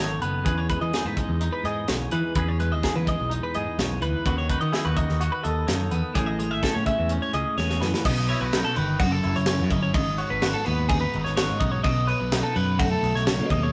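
Math rock and midwest emo with a playful, wistful mood, this cut from a longer piece pairs a twangy, scooped clean electric guitar with bright, compressed twelve-string electric guitar arpeggios over a growly picked electric bass and a crisp, polished fusion drum kit with a punchy kick and medium-tuned snare, whose fill at 7.6 seconds leads from the Emaj7-to-Amaj7 opening into a passage built on B7, F#m7 and G#m7, the band sitting in a stone room's reverb with the warm saturation of a rough rehearsal-room recording.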